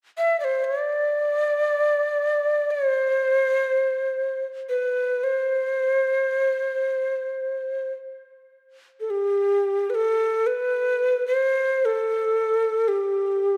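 A lone Native American-style cedar flute enters at 0.2 s and carries this calm, spacious piece of world meditation music in free time, moving between G4 and E5 until 13.6 s. Its tone is breathy and hollow, with a crisp chiff on each attack, vibrato and softened highs, and it sits up front in the recording. The spacious scoring-stage reverb lets each phrase linger, giving this brief cut from a longer piece an unhurried, open stillness.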